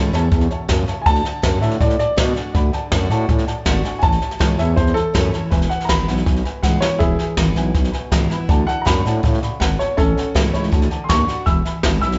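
Rockabilly with a retro, rollicking mood, this brief cut from a longer piece sets a dark, woody upright piano melody with audible action noise over a softer second piano part, a bright picked steel-string acoustic guitar in the background, a thick growling FM bass and an up-front jazz brush kit with a boomy kick that plays a fill at 6.6 seconds, all in a moderate large-studio reverb that keeps the band sounding live in one room.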